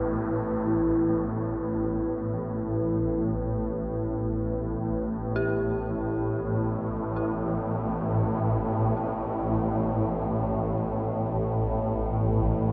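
Cavernous and unsettling, this dark ambient drone excerpt rests on an up-front swarming drone, granular and tense in the low register, beneath a deep, moody sawtooth pad holding sustained chords with chorus and its own reverb. An eerie, inharmonic FM synth bell sits in the background with chorus, tremolo and delay on its decaying arpeggios. At 0.7 s a very quiet bronze singing bowl enters, struck with a felt mallet and ringing with slow metallic beating, all inside a vast cathedral reverb.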